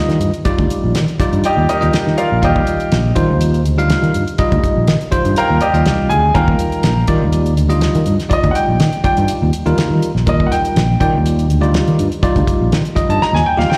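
Captured live through a venue's sound system with recital-hall reverb, this soaring, funky electric jazz fusion excerpt in Eb major at 122 BPM, with a light 16th-note swing, rests on a single Ebmaj9 chord as a bell-like tine electric piano with slapback echo comps, a growly fretless bass with lush chorus sustains beneath, and a damped 70s kit with a fat snare and tight kick drives it, while a brilliant baby grand enters at 1.5 seconds to carry the melody with long sustain before a drum fill arrives at 13.2 seconds.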